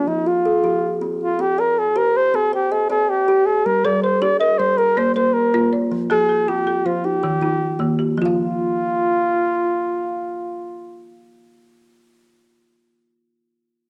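A rippling, warm 12/8 cycle at 106 BPM in dotted quarters, with a straight feel, drives this southern African traditional, mbira-style piece in F equiheptatonic tuning: a soft, ringing kalimba with a hollow-box fingertip pluck spins arpeggios from the start, a dry, rustic marimba struck with hard mallets joins with bright, percussive arpeggios at 3.8 seconds, and an up-front, close-miked flugelhorn sings a mellow, classical-style melody until 11.2 seconds over Fm, Cm, Gm, Bb and Eb chords that settle onto Fsus2, the three parts carrying a cassette-tape color within light reverb and a small-room home-recording ambience.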